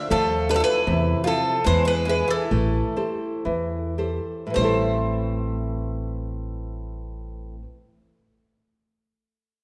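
A fado-style ballad in A minor, longing and mournful, moves in a free rubato 2/4 between 49 and 80 BPM, slowing from 0.9 to 4.6 seconds as the harmony passes from Dm through Am/E and E7 to Am7. A bright bowl-back mandolin carries the melody with its double strings up front, over a fingerpicked classical nylon-string guitar, a boxy, shimmering octave-doubled twelve-string playing a second line, and a woody, growly pizzicato upright bass. A moderate scoring-stage reverb surrounds this brief excerpt cut from a longer piece.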